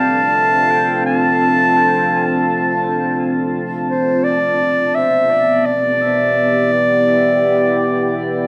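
Meditative and deep, this short ambient excerpt drifts in free time in D dorian, moving from Dm7 to Em7 at 4.2 seconds. A mellow, close-miked clarinet carries the melody in a classical solo style, sitting up front with a dub echo trailing its phrases. Alongside it, a dark, moody pad sustains chords throughout, also up front, its detuned sawtooth unison blended with sine tones, a sub octave, wave-folding and ring modulation, all colored by chorus and its own built-in reverb. The pad's slow attack and long release give it a gently blooming, enveloping presence. The whole mix is echo-heavy, set in a wet echo chamber reverb with a small-room ambience that lends the 8.5 seconds a suspended calm.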